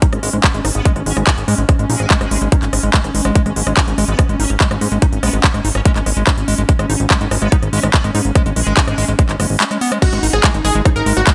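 Tape-tinged and lightly reverberant, this alien, psychedelic trance clip at 144 BPM in G# minor pairs a punchy, up-front electronic kick and a crisp-hatted big-room kit of handclaps, rim clicks and crash with a fat, wave-folded analog bass, a squelchy, overdriven acid bass riff with digital delay, a pulsing, detuned gated texture holding sustained chords in the background, and a metallic, wobbling FM bass line buried under 12-bit grit and dub echo. The texture, acid bass and wobble line pump against the kick until it drops out at 9.6 seconds, and a bright, detuned supersaw stab melody with phaser arrives for the drop at 10.0 seconds.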